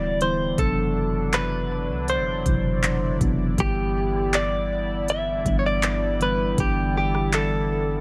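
An up-front, direct-recorded clean electric guitar carries the melody in this short cut from a longer contemporary R&B piece, its picked, compressed tone dressed in lush chorus and digital delay. At a slow 80 BPM in straight 4/4, the mood is longing and late-night, moving from Em7 to D13/F# at 0.6 seconds and settling on G6 at 3.6 seconds. A mellow tine electric piano with a warm, speaker-colored sound fills in the accompaniment, while a chorused pulse-width pad holds soft-attack chords underneath, shimmering and retro with a warbling, detuned edge and a sidechain pumping motion. A deep, boomy 808-style bass with a dark sine tone and fast, decaying attack anchors the low end. The smooth R&B drum kit enters at 0.2 seconds and stops at 7.5 seconds, pairing a knocking kick with silky hi-hats, rim clicks and handclaps in a tape-tinged, electronic production, all set in a digital ambience.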